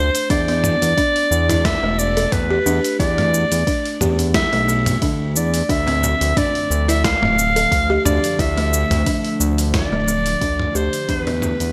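Hypnotic and earthy, this organic downtempo excerpt in D dorian moves at 89 BPM with a light 16th-note swing, led by a bright, forceful jazz-style clarinet with digital delay over buzzing, woody kalimba arpeggios, a smooth, saturated synth bass with sidechain pumping, a gritty sampler-style soul kit of hi-hat, shaker, snare and toms with gated reverb, and a soft electronic kick, while a warbly, lo-fi tape-like pad joins at 5.7 seconds, a small frame drum sounds faintly at 5.9 and 11.3 seconds, and the chords shift from E7(no3) to Dm and Em7 in a bright 1980s-style digital mix that fades out from 9.3 seconds.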